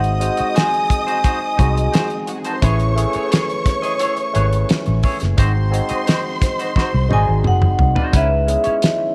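Silky and cinematic, this short excerpt of lush 1970s-style soul moves at an easy 87 BPM in a straight four, cut from a longer piece. A dark, round fingered electric bass with a foam-muted, punchy tone sits up front beside a damped drum kit whose fat snare and tight kick have a rolled-off top, and the drums play a fill from 6.8 to 8.1 seconds. A barky tine electric piano, bright and clean through a combo amp with phaser, carries the accompaniment throughout, while a twangy, picked clean electric guitar plays a quieter riff underneath. A lush symphonic violin section adds a bowed second line with expressive vibrato and a soft attack until 7.8 seconds. Vibraphone with medium hard mallets carries the ringing, metallic melody in two brief phrases, its slow motor vibrato heard in a boxy small room. The harmony moves through G#7, Amaj7 and back to G#7 before turning to C#m7 at 8.1 seconds, all under a light reverb.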